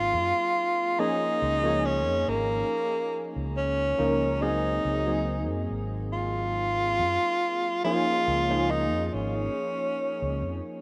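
A rough home-demo mix sits inside a lush hall reverb, giving this short vaporwave fragment, cut from a longer piece, a dreamy, faded air in a slow, straight 4/4. Up front, a breathy tenor saxophone carries the melody in a jazz style, its whispered, intimate tone shaded with vibrato and scooped notes and trailed by tape echo. Beneath it, warbling lo-fi synth keys blend detuned pulse, sawtooth and sine tones with a fast attack and decaying notes, and analog chorus gives them a nostalgic wobble. A round, dark fretless electric bass with subtle chorus anchors the low end and drops out at 10.6 seconds, just before the saxophone and keys finish at 10.8 seconds. The harmony drifts between Ab9 and Db69 chords, keeping the mood hazy.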